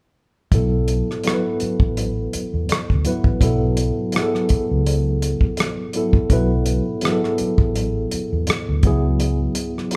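A lightly swung sixteenth-note groove at a relaxed pace carries this smooth, introspective neo-soul R&B excerpt, where a dry, dark soul drum kit with a tight kick, hi-hat and rim click sits up front beside a worn, slightly out-of-tune tine electric piano that is lightly overdriven through its built-in speakers, while a round, foam-muted fingered electric bass anchors the low end until 9.5 seconds, all in a live-room sound with a large studio reverb, moving from B7(no3) to C#m7 near 8.8 seconds.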